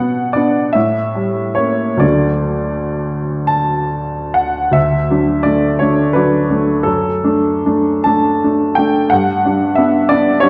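A clear, woody upright piano, slightly detuned and up front, carries this short romantic nocturne alone from 0.0 to 10.5 s, its long sustain ringing through a wet recital hall. In a slow, rubato 12/8 around 38-62 BPM, the melancholic, mournful passage moves from Bm through A7b9 to D, shifting into a second section at 4.8 s that touches D/F# and settles on Gmaj7. The production is dark and warm, and the clip is cut from a longer piece.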